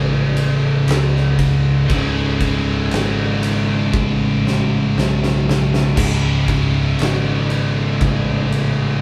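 A sludgy, ominous stoner and doom metal excerpt at a crawling 59 BPM in C# minor opens on a single C#m chord, where two thick fuzz guitars, one dark and set back in the mix, grind out a low riff beneath a bright, double-tracked high-gain guitar reaching higher, while a growly, amped picked bass anchors the bottom and an oversized low-tuned acoustic kit with a fat snare, punchy kick and dark cymbals enters at 0.4 s in a big, pumping room, playing a fill from 3.9 s to 6.0 s.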